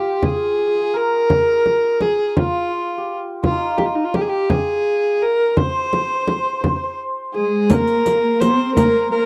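A dry, close 1970s-style studio sound with light reverb frames this hypnotic, melancholic Persian modal piece in a slow 6/8 at 56 BPM, where a bright, earthy kamancheh with light vibrato and portamento carries the melody up front over a shimmering, ringing hammered santur and a close frame drum, before a lush cello section enters at 7.4 seconds and a riq with dark jingles joins softly in the background at 7.7 seconds.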